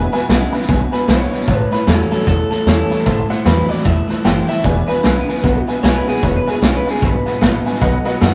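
Rockabilly at 152 BPM in E mixolydian, with a rowdy, retro swing, taken from a longer piece and built on an E7, A7, Am7 and B7 progression. A clean, bright, twangy electric guitar solo runs from 0.0 to 8.3 seconds over a second small-amp electric guitar, slightly broken-up and lo-fi, that churns out a low riff, while a woody pizzicato upright bass holds the bottom. A punchy, gritty vintage drum kit sits up front, with a detuned, jangly honky-tonk upright piano and a full-bodied picked steel-string acoustic guitar in the background, all captured in a rough rehearsal-room recording with tube saturation and a moderate stone room reverb.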